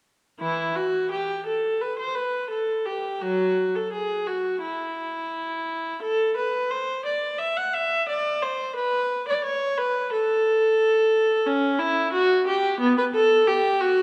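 Flowing and introspective, this baroque-style suite movement is carried by a single unaccompanied viola, heard from 0.4 to 14.0 seconds as part of a longer piece. The bowed line moves with a supple rubato over a 4/4 metre, spanning from E3 up to F#5. The player uses a period style, with a gut-string tone that sounds both rich and reedy, touched by light vibrato. The viola sits up front yet carries a distant quality, wrapped in a wet concert hall reverb with a 2.2-second decay. The production leans dark and warm, giving the solo an inward character.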